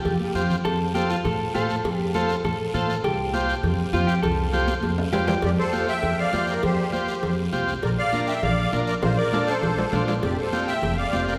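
Festive and joyful, this cumbia moves at a brisk 200 BPM in straight 4/4 in F major, heard as a short cut from a longer piece. A woody, growly pizzicato upright bass sits up front from the start, while bright, high-tuned congas with soft hands and ringing metal-shell cowbell and timbales fill out the percussion in the background, joined by a raspy, close and dry guiro. A vintage, buzzy combo organ with light vibrato carries the accompaniment, and a clean, picked, compressed electric guitar plays a second line until 5.4 seconds. At that point a reedy, shimmering musette accordion enters with the melody up front, its musette tuning giving the lead its character. Drum fills appear along the way, including one from 9.0 to 10.2 seconds, and the harmony moves from Csus4 and F through Bbadd9 before settling on Fsus2. A long church reverb lends the whole band a spacious, hall-like sound.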